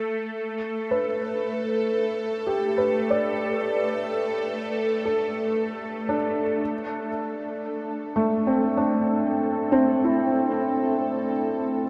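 Awash in a vast, echoing reverb, this spacious, melancholic ambient piece in A minor drifts at 58 BPM in 3/4, as a tense, string-like drone with a detuned sawtooth edge, phaser and vibrato sustains from the opening while a soft, felt-muted upright piano with a vintage, intimate tone and tape echo enters at 0.9 seconds with arpeggios over A9sus4, shifting to C at 6.6 seconds.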